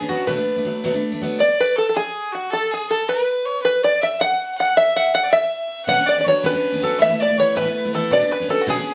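A twangy, plunky open-back banjo leads this fragment of a Celtic jig, fingerpicked and percussive at the front of the mix as it carries the melody. The tune moves at 107 BPM in a straight 6/8 in B dorian, with a driving, dark and lively mood. A single bowed fiddle with a nasal, earthy tone plays a second line in the same register, sitting a little lower in level. A bright, full-bodied picked steel-string acoustic guitar opens on a Bm7, drops out at 1.4 seconds while the two melody instruments carry on alone, and returns up front at 5.9 seconds with Bmadd9 and Asus2 chords. The band plays live together in one room, wrapped in a wet studio ambience that gives the short clip a lively, shared-space feel.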